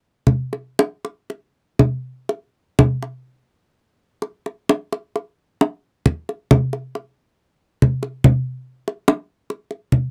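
A solo kendang enters at 0.3 seconds, its tight, acoustic hand strokes sitting close, dry and up front in this serene, ceremonial gamelan fragment, moving in a straight 4/4 at a slow 58-71 BPM under light reverb with the intimate feel of a 1970s studio, shifting into a new section at 8.2 seconds before breaking off at 10.1 seconds.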